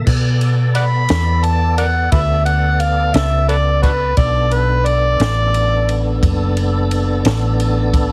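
An overdriven, amplified harmonica carries a gritty, jazz-style solo line up front, entering at 0.8 seconds and bowing out at 6.2 seconds, with light vibrato, tongue slaps and scooped notes. This short, mournful, brooding slow blues cut from a longer piece moves in a straight 12/8 over a single Bm7 chord. Beneath it, a full tonewheel organ holds sustained chords, lightly overdriven with chorus vibrato, audible key click and a slow rotary speaker. A hollow-body short-scale electric bass, played with the fingers, sits up front with a round, punchy, amped tone. A compact cocktail drum kit, acoustic and dry, adds kick, a high-tuned snare, and ride and crash cymbals with a dark shade. Light reverb and a heavily compressed, radio-like sound shape the recording.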